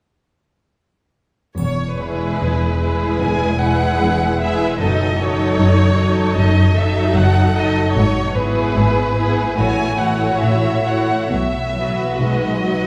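Classical slow romantic orchestral movement, warm and lyrical with a rubato feel, in which a rich, focused violin section carries the bowed melody from 1.6 s over ringing, thumb-plucked concert harp arpeggios in the background, a very quiet cello section with expressive portamento, and a smooth, even double bass section, while a triangle sounds briefly in the background until 3.2 s and, from 2.0 s, a lush second violin section adds a second line and a close, soft-attacked viola section supplies accompaniment, the whole set in a long church reverb.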